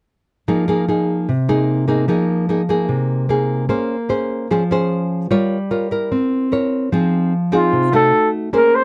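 Smooth and intimate, this short bossa nova fragment in F minor moves at 149 BPM in a straight 4/4, cut from a longer piece. A fingerpicked classical nylon-string guitar sits up front from 0.5 s, its finger squeaks audible as it carries the chords from Fm7 through Bbm9, Gm7b5 and C7b9. At 7.5 s a breathy flugelhorn enters with a mellow, whispered jazz melody, soft in attack and touched with light vibrato, all framed by light reverb and the color of cassette tape.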